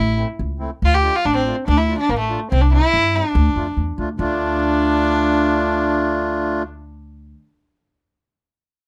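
Soulful and festive, this short klezmer excerpt moves at 142 BPM in a straight 2/4 in D minor, its chords passing from Am through Dm and C back to Dm. An airy-bowed violin with a nasal gut-string tone carries the melody up front, while a dark, single-reed accordion enters at 0.2 seconds with clear, dry-tuned accompaniment. A woody, thumpy pizzicato upright bass anchors the low end until 7.3 seconds, all captured close and detailed in light reverb.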